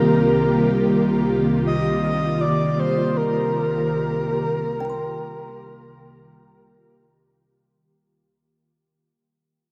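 A breathy, flute-like synth lead carries a soft melody up front over an ethereal, airy pad and an evolving analog drone in the background, with a dark, woody kalimba ringing briefly with tape-echoed arpeggios at 4.8 seconds, all set in a vast cathedral reverb as this serene, spacious ambient excerpt fades out across its length.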